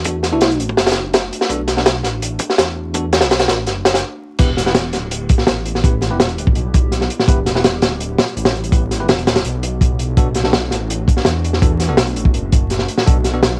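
A crunchy, saturated breakbeat kit with a punchy kick and dark cymbals drives this frenetic yet atmospheric jungle cut, building up until a brief stop at 4.0 seconds before the drop lands at 4.4 seconds. Underneath, a deep, rumbling detuned saw bass holds a saturated, dark low end while a very quiet, warbling tape-like pad lays down nostalgic, lo-fi sustained chords. A clean tine electric piano scatters bright, bell-like stabs with dub echo in the background, and a sparkling FM electric piano sounds one short mellow note at 0.3 seconds, all wrapped in a moderate booth ambience with the feel of a home cassette recording and vinyl crackle.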